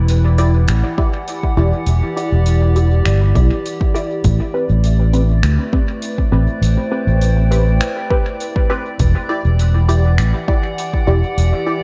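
A growly, amped fingered electric bass sits up front in this deep, hazy ambient dub fragment at 101 BPM in A dorian, moving through Em7 and Am9 beneath an overdriven electronic kick re-recorded in a large room and a soft-mallet kit of finger snaps and hi-hat soaked in dub echo. A warbling, lo-fi tape-like pad holds detuned, nostalgic chords with chorus and built-in reverb, while a muted, filtered dub chord stab plucks short sawtooth hits through phaser, ensemble chorus and echo. From 4.6 seconds a calm, glassy harmonics texture drifts in on a single high D, its sine overtones adding a faint shimmer to the small-room ambience.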